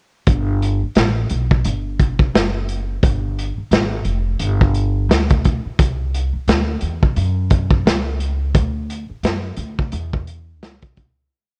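A crunchy boom-bap drum kit and a woody, thumpy upright bass enter together at 0.3 s in this smooth, relaxed jazz-hop piece in G major, moving at 87 BPM with a swung sixteenth-note feel. Up front, the gritty drums pair a punchy, hard kick with a backbeat snare and hi-hat in a small-room sound with a rolled-off top. The pizzicato gut-string bass walks with muted ghost notes and chromatic approach notes, coloured by transformer saturation. The whole recording carries light reverb and a worn cassette-tape warble with drifting pitch, and it fades out from 8.5 s to 11.3 s.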